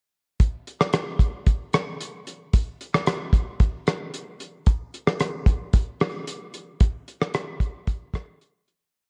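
A cloth-damped, thuddy acoustic drum kit carries this short indie pop piece from 0.4 seconds to about 8.8 seconds, playing a soft, rhythm-box-like pattern on hi-hat, kick drum and rim click. The kit sits up front and sounds dry, dark and warm, with a tight kick and a rolled-off top end that keeps the hits smooth. The groove moves at 112 BPM in a straight 4/4, all within a single verse. The whole recording carries the hazy, nostalgic character of worn old cassette tape, with warbly pitch drift and a light reverb around it. A fade-out begins at 6.8 seconds and carries the piece to its close.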